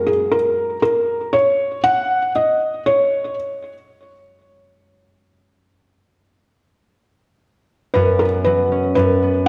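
A lightly swung sixteenth-note pulse at 118 BPM in 4/4 drives this warm, playful folktronica excerpt, with a ringing, fingerpicked concert harp playing arpeggios up front throughout. A dark, intimate felt-muted upright piano, its action noise audible and its tone touched by digital delay, carries the melody until 3.3 seconds and returns at 7.9 seconds, just before a Bsus2/F# chord arrives at 8.0 seconds. A moderate scoring-stage reverb gives both instruments a shared sense of space.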